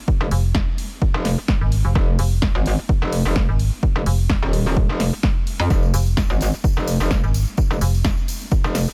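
Bass house with a bouncy, aggressive, lightly swung groove, heard as a short cut from a longer track. A punchy, tape-warm electronic kick and a layered house kit of snare and hi-hats drive a pair of up-front basses: a distorted, chorused wobble bass that is metallic and bright, and a digital FM bass with fast, decaying notes, both pumping against the sidechain. A jingly, close tambourine slips in behind them at 5.7 seconds, all set in a digital ambience.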